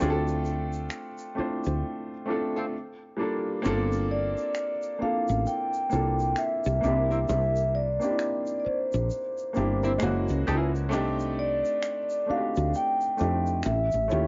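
Mellow, ringing vibraphone played with soft mallets and a slow motor vibrato carries the melody in this introspective, sultry neo-soul R&B piece in G minor, moving at a slow 66 BPM with a swung sixteenth feel. Beneath it, an intimate upright piano with audible action noise and a growly, round fretless bass treated with ensemble chorus sit up front, while a quiet egg shaker and finger snaps keep time in a small room. From 2.6 to 10.7 seconds a dark, clean, compressed archtop guitar adds a picked second line through wah, and the vibraphone, piano and guitar all carry a lo-fi cassette tape character over chords such as Gm11, C7 and F#9.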